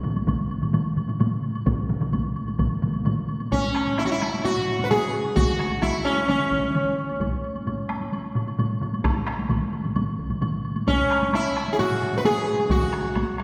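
Japanese traditional taiko drum ensemble music, ceremonial and powerful, moving at 130 BPM in a straight 4/4 around F# suspended pentatonic, cut from a longer piece and heard from further back in a wet concert hall. Four taiko ensemble parts struck with heavy and hard sticks drive the piece from the start, one carrying a vintage, band-limited tone and another sitting close in the background, while a woody woodblock clicks along throughout. At 3.5 s a bright, plectrum-plucked sitar comes up front with buzzing, shimmering sympathetic strings, playing between C#4 and B4, then drops out and returns at 10.9 s.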